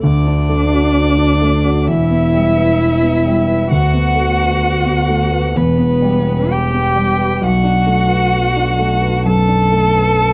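Fragile and longing, this rubato neoclassical fragment in 4/4 sets a veiled, con sordino violin melody with vibrato over a dark, smooth-topped cello second line placed up front, supported by a warm grand piano accompaniment and a muted, bowed double bass with portamento, the four parts sounding together for the full 10.3 seconds in light reverb.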